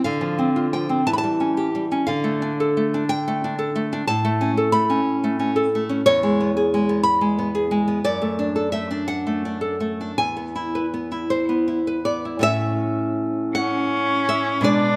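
A nylon-string guitar opens this romantic duo alone, fingerpicked and warm, its small acoustic sound placed up front as it sets a slow, rubato 6/8 pulse at roughly 53 to 62 beats per minute in dotted quarters. The harmony begins in a shadowed minor colour, moving through Dm7, A7/E and Dm before settling into A major at 4.1 seconds, then passing through E, D/F# and E back to A. The mood is yearning and elegiac, unhurried in its pace. At 13.6 seconds a single bowed cello enters with the melody, rich and focused with vibrato and a smooth top, sitting close to the listener. A moderate recital hall reverb gives the pair a natural sense of space, and this cut from a longer piece ends just as the cello's voice takes shape at 15.0 seconds.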